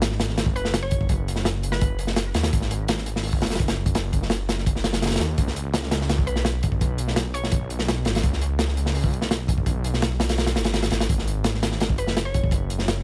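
A crunchy breakbeat kit drives this dark, frenetic drum and bass and jungle excerpt at 168 BPM in a straight 4/4, with hi-hat, a punchy kick and a medium-tuned snare running for the full 13 seconds. The drums sound gritty and saturated, with a rolled-off top and a small-room character, sitting up front. Underneath, a thick, menacing detuned saw bass holds the low end in G# minor with a beating, sustained tone, also placed up front. A woody, round mallet-like synth pluck drifts in and out in the background at 0.6, 6.3 and 12.0 seconds, its percussive FM tone treated with chorus and dub echo. The harmony rests on G#7, shifts to C#5 at 5.4 seconds and returns to G#7 near the end, all framed by a small room ambience.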